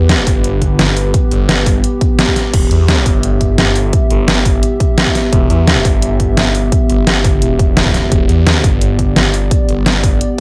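Dark technical drum and bass with a mechanical, tense mood, cut from a longer piece, where a thick, swirling phased saw bass sits up front on a held E minor chord beneath a deep, moody analog pad with chorus and sidechain pumping, while a punchy layered electronic kick and a dubstep kit of crash, hi-hat and a deep, up-front snare, both re-recorded in a large room, enter just after the start and drive the straight 4/4 pulse until just before the end.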